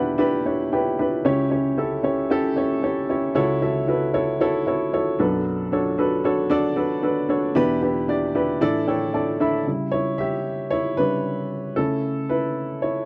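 A dark, woody upright piano carries this short pop passage alone, sitting up front in a dry, close room that recalls a 1970s studio, with only a light touch of reverb. The mood is driving and earnest, moving at 114 BPM in a straight 4/4, with the instrument tuned slightly low to A4 = 439 Hz. The piano ranges from B1 up to B5, opening with a fill before working through Em7, C#dim, F#m7/C#, Bm7 and back to Em7. A second fill arrives at 8.6 seconds over Asus4, and from 9.7 seconds the piano takes a solo turn over C#dim, moving on to Aadd9/C#. Its tone is boxy and mellow throughout. The clip runs to 13.1 seconds and is cut from a longer piece.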